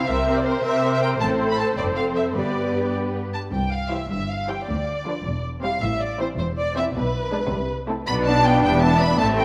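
A bowed string orchestra opens with the violins and violas together, the first violins carrying the melody high and up front with a focused, vibrato-rich sound. The second violins trace a darker, more distant line beneath them, while the violas supply smooth, even accompaniment. At 0.1 seconds the cellos and double basses join on the bass, the cellos lush and the basses clear and intense with a light vibrato. This lively, spirited classical-period movement moves in a straight 6/8, and at 3.5 seconds it passes into a second section whose harmony grows more restless, with diminished chords leading toward a closing E minor seventh. A moderate scoring-stage reverb gives the ensemble a sense of space, and the passage is cut from a longer piece.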